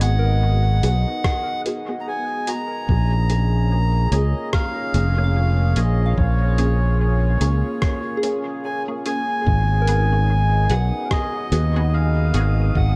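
Spacious and deep, this ambient dub excerpt drifts at 73 BPM in 4/4 with a gently swung sixteenth feel, set in G# dorian and moving from G#m7 to A#m7 at 2.9 seconds before settling back on G#m7 at 9.5 seconds. A reedy, nasal melodica carries the melody throughout, its breathy tone trailed by dub echo. Beneath it, a punchy fingered electric bass sits up front and anchors the low end. A smooth analog pad with slow attack and long release holds sustained chords under chorus, while a soft, pure FM bell spins arpeggios in the background through chorus, phaser and dub echo. A muted, resonant filtered chord stab adds short plucks, colored by phaser and echo. The drums are muffled and pitched down, with a lo-fi sampler-style kit of hi-hat and rim click washed in dub echo and a thumpy electronic kick entering at 1.2 seconds. A wind-like tuned noise texture drifts in at 10.2 seconds. The whole sits in an echo-heavy mix with light reverb.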